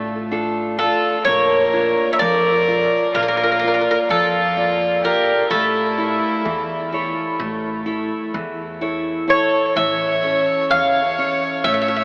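Greek folk in 9/8 at 127 BPM, this melancholic, reflective excerpt cut from a longer piece sets a picked steel-string acoustic guitar, full-bodied with audible finger squeak and up front, over a woody, thumpy pizzicato upright bass, moving through Dm, Bb and A. At 0.8 seconds the metallic, double-strung bouzouki enters with the melody through an analog delay, joined by a single bowed violin playing a pure, floating second line sul tasto. The whole mix is dreamy and soaked in a huge ambient reverb, with an AM radio character.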